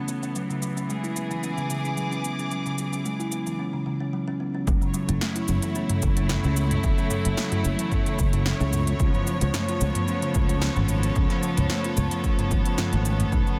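Organic downtempo in F# minor at 111 BPM, with a gentle swing on the sixteenths and a meditative, warm mood, taken from a longer piece. A clear string section holds sustained, earthy chords with light vibrato and a biting edge, shaped by a filter sweep in the opening seconds and a sidechain pump throughout. Over it a woody, mellow kalimba plays dark, ringing arpeggios, coloured by vintage 12-bit sampler grit and a digital delay, while a deep house kit of smooth hats, shaker, punchy snare and toms carries a small-room, layered character. At 4.7 seconds the harmony moves from E7 to F#m7, and a punchy electronic kick and a growly, chorused fretless bass enter together; the bass sustains low notes and pumps with the sidechain until 13.4 seconds. A C#7b13 chord colours the later bars, and the whole sits in light reverb under a dense, heavily limited modern master.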